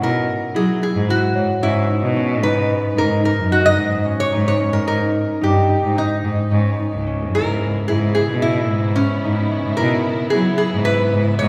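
Moving in an uneven 9/8 at 222 eighth-note beats per minute, this urgent, pensive contemporary chamber piece sets a lap resonator guitar up front on the melody, its slide tone metallic and nasal, while a biting, bowed cello with vibrato carries the bass and a concert harp rings out fingerpicked arpeggios. A delicate, bell-like celesta glints in the background until 3.8 s, and a lush studio string section enters at 7.3 s with sustained, smooth-topped chords as the harmony moves from C#m7 through G#m7 and D#7 to C#m7/G#. The ensemble is heard from further back in a reverberant concert hall.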